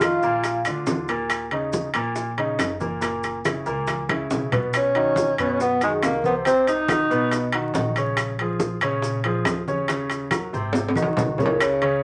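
A breathy, subtoned tenor saxophone with vibrato sits up front in this sultry, driving Afro-Cuban jazz at 140 BPM, sharing brief passages with a metallic vibraphone in the background that return at 4.8 s, while a natural-sounding baby grand piano and a woody pizzicato upright bass play throughout over ringing congas and timbales, tight high-tuned bongos, very quiet claves and grainy maracas, with drum fills at 3.9 s and 10.8 s, moderate studio reverb and a layer of vinyl crackle.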